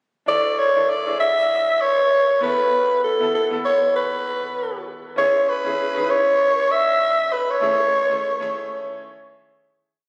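Captured on a phone in the room, the recording carries a moderate concert hall reverb with a roughly 2-second tail, giving this short, complete afrobeats piece a roomy, slightly distant sheen. It's a joyful, sunny chorus at 98 BPM in 4/4, with a 16th-note swing of 58%, tuned to A4 = 442 Hz and moving through Dsus2, Esus4, C#m and Amaj7. Up front, a breathy alto saxophone carries the solo melody in a pop style, built from short motif-based call phrases with vibrato; its tone is raspy and gritty underneath, with a smooth top, and a tape echo trails its lines until it stops at 9.5 seconds. Sitting well beneath it, a brilliant, polished concert grand piano plays push-rhythm chords in drop-2 voicings, dressed with grace notes, its short sustain and deep bass keeping the accompaniment present and crisp. The whole piece fades out from 7.6 seconds, with the piano ringing on until 10.1 seconds.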